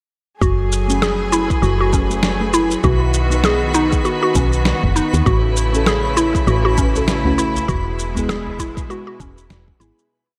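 A warm, mystical organic downtempo piece opens at 0.4 seconds with a 99 BPM swung groove in F# dorian: a woody, dark FM bass line up front, a deep, soft electronic kick in the background, and a gritty, compressed shaker and snare with a roomy, layered feel. Clear, biting bowed strings with light vibrato hold sustained chords under sidechain pumping and shimmer reverb, while a warbling, vintage mallet-like FM pluck repeats a 16-step arpeggio through chorus and delay. From 0.9 seconds, a deep, mellow chord stab plays syncopated rootless voicings with a filter sweep and phaser in the background. A sparkling granular texture holds a high note with an octave-up shimmer from 1.0 seconds, and a deep, close udu adds hand drums in the background from 7.0 seconds. The harmony moves through F#madd9, B, A and E, and the piece fades out from 6.9 seconds in a lush hall reverb.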